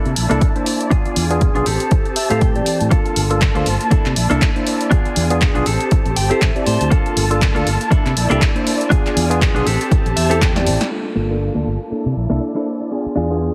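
A worn, slightly out-of-tune tine electric piano, lightly overdriven through a combo amp and phased, opens this groovy, funky excerpt of filtered disco house at 120 BPM in G dorian, alongside rich bowed strings with vibrato and a soft attack, and a bright, twangy clean guitar riff with spring reverb that adds short fills. A fingered electric bass sits up front with a punchy, tape-warm analog kick, while a drum machine supplies handclaps, a punchy snare and swung hats, and the piano, strings, guitar, bass and hats all pump against the kick under a low-pass filter over jazzy C13, E7b9, Am7 and Gm9 changes. A drum fill at 10.4 seconds leads to a band accent, then the kick drops out at 10.5 seconds and the drum machine at 10.9 seconds, and a filter sweep carries the remaining parts to 13.5 seconds, all within a heavily compressed, radio-like sound with light reverb.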